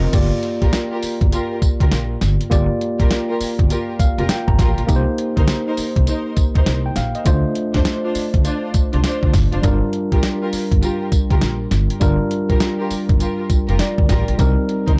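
A bouncy, slick new jack swing R&B excerpt in G minor at 101 BPM with a 16th-note swing opens on a clean tine electric piano heard through its built-in speakers, lush bowed studio strings stabbing with vibrato, portamento and digital delay, and a woody pizzicato gut-string upright bass, joined at 0.1 seconds by an up-front, sampler-style 12-bit drum machine with a thumpy kick, medium-tuned snare, hi-hat, tambourine and crash re-recorded in a small room, as the piano adds fills at 3.7 and 13.5 seconds over a Gm7, Cm7, Dm7 progression in a dark, dry mix.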